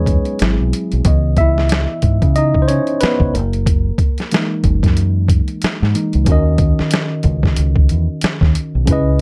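Introspective and soulful, this neo-soul and R&B fragment, cut from a longer piece, swings on sixteenths as a worn, slightly out-of-tune tine electric piano solos up front through its built-in speakers for the first 6.3 seconds, moving over G#7alt, C#m9 and F#13 before a D#m7 opens the next section. Beneath it, a round, punchy fingered dub bass sits deep and dark, while a compressed, pitched-down sampler-style boom bap kit adds a gritty, thumpy kick, a medium-tuned snare and hi-hat with a tape-warm grain. The production is dark and dry, with little reverb.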